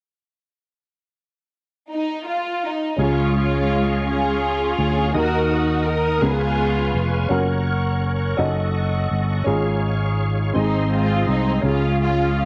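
The string section leads this soulful, reverent gospel excerpt, carrying the melody from 1.9 seconds with a smooth, intimate bowed tone, soft attacks and vibrato, sitting close and up front. At a slow 56 beats per minute in a straight 6/8, the piece rests in D-flat major and moves through chords such as E-flat minor, G-flat and a G-flat minor sixth before settling back on D-flat. From 3.0 seconds a worn, woody upright piano, slightly out of tune, fills in the accompaniment, while a reedy tonewheel organ holds sustained chords with audible key click, chorus vibrato and a fast rotary speaker. A growly, punchy fretless electric bass enters at the same moment, amped and up front with a subtle chorus. The strings pause and return at 10.6 seconds, and a moderate spring reverb gives the whole studio sound a soft, lingering tail.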